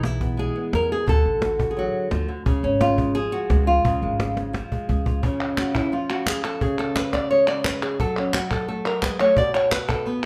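A moderately reverberant large-studio sound frames this intense, fiery flamenco excerpt at 173 BPM in C# phrygian dominant: an up-front, fingerpicked acoustic guitar with audible finger squeak carries the melody throughout, a pizzicato upright bass with steel strings plays until 5.2 s, a close, woody cajon struck with hard hands and faint snares plays from the start with a drum fill arriving at 4.4 s, crisp palmas hand claps enter at 5.4 s under a nylon-string guitar solo, and the chords move from E through D and C# to F#m and Asus2.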